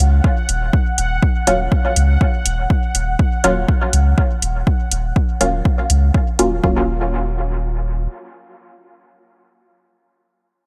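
A clean, smooth sine sub bass with sidechain pumping opens this hazy, deep dub techno piece at 122 BPM in Eb minor. It arrives together with dry, metallic electronic hi-hats and a mellow, bubbling texture of detuned sawtooth tones stepping through random resonant filter changes, softened by chorus, its own reverb and pumping. A punchy, overdriven kick drum comes in almost at once, sitting up front with the hats and the dark bass in a straight 4/4. At 1.5 seconds a muted chord stab enters on an Ebm7 harmony, its filter-plucked sawtooth and triangle tones short in decay and treated with chorus, phaser, pumping and dub echo. The drums and the bubbling texture fall away around 6.6 seconds, leaving the sustained sub bass and the echoing stabs together for a moment before the stabs carry the closing stretch within a digital ambience.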